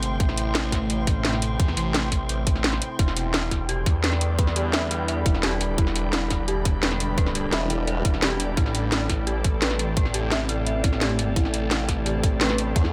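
A tight, up-front electronic kick drives this mechanical, dark slice of technical drum and bass at 172 BPM, joined by a cracking snare and metallic hats from the kit and a thick, swirling phased saw bass. A metallic, inharmonic FM drone and an ethereal, warbling pad pump under the sidechain with chorus and reverb, while an eerie detuned synth bell enters at 3.0 seconds with arpeggios through chorus, phaser and delay over Am and Em7. A saturated formant-sweep wobble bass cuts in briefly at 7.5 seconds and again at the very end, all set in light digital ambience.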